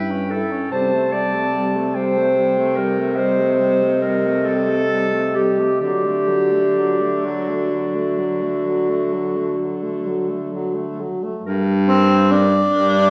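In a rubato 12/8 at 42-50 BPM, this melancholic, solemn classical fragment for single-reed quartet sets a dark, smooth-topped clarinet melody until 10.7 seconds over a mellow second clarinet line, a distant, roomy tenor saxophone accompaniment with vibrato and an up-front, vintage baritone saxophone bass with light vibrato, moving from A7/G through Am7b5/C to D before turning to G minor at 11.4 seconds, all heard from further back in a reverberant recital hall.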